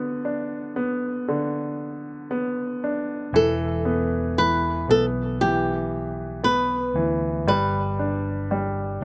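A fingerpicked flamenco guitar carries the melody from the first moment, its acoustic tone sitting up front, while a bright concert grand piano plays accompaniment beneath it with a polished, brilliant sound and short sustain. This is a tender, emotional pop ballad at a slow 58 BPM in a straight 4/4, cut from a longer piece and tuned to A4 = 441 Hz. At 3.3 seconds a fingered electric bass enters, dark and round with an amped character, adding low weight under the piano's deep bass. The harmony moves from Bm/D to Em and then to G near the close. The recording has a dry quality, captured outdoors with little reverb and some lossy compression artefacts.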